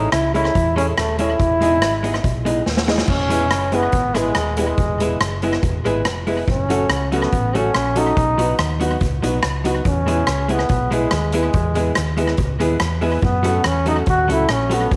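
A roomy, echo-chamber sound carries this joyful, cheerful ska excerpt in E major at 142 BPM, where a vibrato-laden trombone sings the melody over clean, compressed hollow-body jazz guitar, mellow, woody upright piano stabs, a round, amped short-scale bass and an up-front street-band drum kit with a boomy kick and tape echo, whose fill at 2.7 seconds leads into the longer second section.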